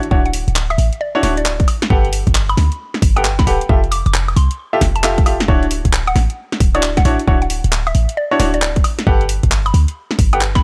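Soulful and sunny, this short cut of swung two-step UK garage pairs a punchy, layered electronic kick and a house kit of handclaps, hi-hat, cracking snare and woodblock, both re-recorded in a small room, with a tight, up-front 808-style sine bass warmed by tube saturation, clear but worn grand piano stabs with delay, and a woody, round FM mallet-like pluck melody coloured by chorus, phaser, cassette tape and delay, all moving through Dmaj9, Gmaj9 and Fmaj9 in a dry, close mix before the chords drop out at 8.8 seconds.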